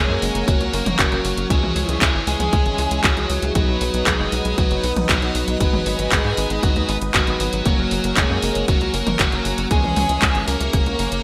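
Sunny and romantic, this excerpt from a longer italo disco track rides a straight, steady pulse with a bright 1980s-style digital sheen and light reverb. A biting, overdriven electric guitar carries the melody up front, its picked lines trailed by delay, while a lush string machine holds sustained chords in the background, shimmering through phaser and ensemble chorus. Fat, brassy analog synth stabs with detuned sawtooth bite and vibrato punctuate the harmony. Underneath, a tight sequencer bass drives with a quick filter pluck, its sawtooth and square tones decaying mellowly. A house drum kit of handclaps, hi-hat and toms sits forward with gated reverb, joined at 0.5 seconds by a punchy, tape-tinged electronic kick, and the chords cycle from F# through C# minor, B and G# minor.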